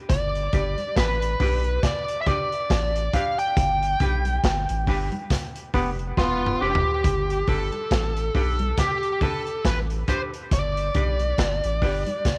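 A light reverb and small-room ambience give this roots reggae excerpt an intimate, close feel, with a warm, uplifting mood at a slow 69 BPM in 4/4, swung on the sixteenths and centred on G mixolydian. A bluesy overdriven lead guitar carries the melody up front, its dark, distorted picked tone trailed by dub echo, while a round analog bass sits deep and nasal beneath it with tube saturation adding weight. The crunchy breakbeat drum kit, gritty and saturated with a rolled-off top and tape echo, covers hi-hat, kick, snare and toms, with congas under soft hands tucked in the background. A clean semi-hollow electric guitar enters at 0.5 seconds to accompany with tremolo and dub echo. The band hits an accent from 3.6 seconds, a drum fill leads into the second section at 7.0 seconds, and a clear trombone with vibrato briefly sounds a single B3 from 5.7 seconds, carrying its own dub echo.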